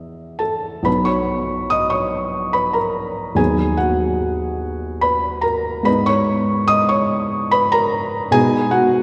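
A soft, intimate felt-muted upright piano sits up front in a wet church reverb, playing a tender, serene romantic nocturne alone in an unhurried 3/4 with rubato and uneven beats, its mellow tone spanning B1 to D#6 as the harmony moves from E through B and B/D# to G#m and G#m/B in this brief cut from a longer piece.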